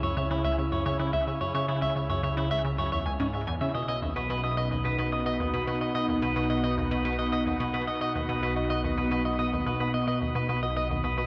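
Ambient, sequencer-driven space music at 109 BPM in 4/4, hypnotic and mysterious, moving from C#m to B at 3.7 seconds in this fragment cut from a longer piece. A morphing, warbling wavetable pad holds full-bodied chords with chorus and its own reverb, while an up-front clean electric guitar picks warm arpeggios through delay. A squelchy, resonant blip pluck plays a riff coloured by chorus, delay and vintage 12-bit grit, over a fat, thick analog bass, all bathed in a wet spring reverb and an echo-heavy mix.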